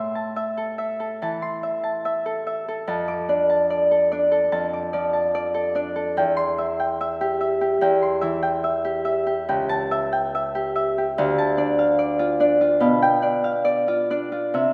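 Bathed in the wet reverb of a concert hall, this short passage cut from a longer classical piece features a solo Celtic harp, fingerpicked and ringing up front across a range from C#2 to D6, moving with serene, graceful rubato at about 73 BPM in 4/4 through chords from Am and Dm/F to C/E, A7/C# and G7/B in C major.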